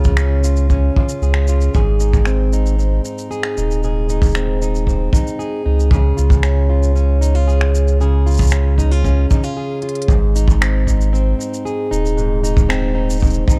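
A straight 4/4 pulse at 115 BPM sets a delicate, hopeful folktronica groove, carried by a tight, roomy kick drum with a distant, rolled-off top and a brushed character. Around it, an organic electronic drum kit adds overdriven finger snaps, smooth hi-hats and shaker, sitting lower in the mix. A deep, round sine sub bass stays up front with a fast attack and sustained notes. A dark, full-bodied jumbo steel-string acoustic guitar, plugged in and fingerpicked, plays arpeggios through a delay, with audible finger squeak. The harmony moves between Db and Ab, and a short break at 9.6 seconds, with a drum fill at 9.8, leads into a new section at 10.1 seconds. The production is warm and dark, set in a small room ambience, and the clip is cut from a longer piece.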